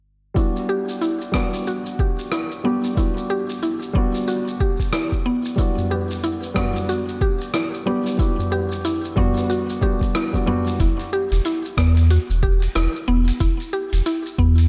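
A swung 4/4 groove at 92 BPM drives this meditative, mystical stretch of organic downtempo in E minor, anchored by a deep, up-front electronic kick beneath a gritty, compressed sampler-style kit of hi-hat, rim click and shaker, with low-tuned, short-ringing tabla joining at 5.8 seconds. Over an Em7 harmony, a soft, felt-muted upright piano with audible action noise, 12-bit sampler grit, sidechain pumping, low-pass filtering and delay shares the space with a woody, bright FM mallet-like pluck playing chorused, delayed arpeggios, and both parts carry filter sweeps. At 10.8 seconds the piano and tabla stop as the chord settles to Em and a round, sine-like sub bass with tube saturation and pumping enters, the whole piece sitting in a dark, warm production with light reverb, digital ambience and a faint mains hum.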